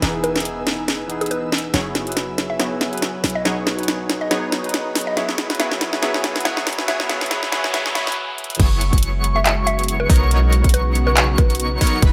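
Future bass at 140 BPM in E lydian, lush and playful, with a swung, half-time feel across this cut from a longer piece. From the start, a supersaw stab riff, an ethereal pad sitting in the background, and a barky tine electric piano with tape echo, all pumping against the sidechain, join a deep, boomy 808-style bass and an up-front trap kit with a sharp snare, metallic hats, handclaps and crash to drive the build-up, and a fraction of a second later a woody, round FM pluck takes up the melody. The supersaw's low-pass filter sweeps through the opening stretch as chords move from Emaj7 through F#9sus4 and Bmaj9 to E, a very quiet riser enters at 5.9 seconds, and the drums fill until a brief break at 8.2 seconds. At 8.6 seconds the drop lands: the electric piano drops out, a hard-clipped electronic kick punches in up front, and a soft, dreamy lead with vibrato, chorus and phaser spins bright arpeggios high above over F#9sus4 and Bmaj9. 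A moderate digital room reverb gives the mix a polished, spacious finish.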